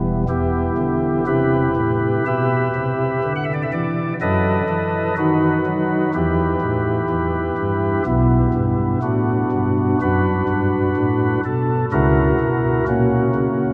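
A dark, cathedral-soaked sound opens this short excerpt, the long reverb letting every chord hang in the air. A solo pipe organ on soft flute stops, placed up front with baroque voicing, a gentle chiff and a tremulant, plays a grave, solemn chorale in E minor at a slow 62 BPM in 4/4, spanning from deep bass notes to the upper register. The harmony moves from Em through B7/F# and Bm before closing on F#7/C# at 11.9 seconds, as the fragment breaks off from a longer piece.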